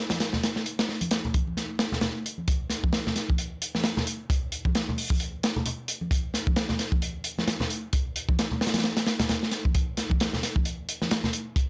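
Breakbeat with a swaggering, gritty mood, this short cut from a longer piece rides a swung sixteenth-note feel in 4/4. A crunchy acoustic drum kit of hi-hat, kick and snare sits up front, its saturated tone mid-forward with a rolled-off top, a tight kick and a medium-tuned snare captured in a studio room. Congas play underneath at a lower level, with a warm, acoustic character in a small room. The kick drops out briefly between 1.6 and 2.5 seconds before returning, and the kit carries on until 11.7 seconds. Light reverb gives the whole piece a touch of space while keeping the gritty drums close and up front.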